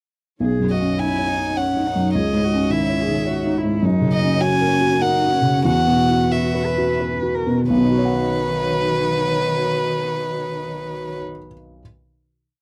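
A dry, close recording with light reverb and a 1970s studio character frames this hopeful and intimate neoclassical piece in a rubato triple metre. A felt-muted upright piano sits up front with soft, mellow broken chords, while a single violin carries the airy, sul tasto melody from 0.7 seconds and a woody, dark cello adds a counter-melody that answers at phrase ends. A chamber string section holds gentle sustained chords in the background as the theme slows from 3.0 seconds and settles into a final chord at 7.7 seconds, with the piano ringing on alone to the close.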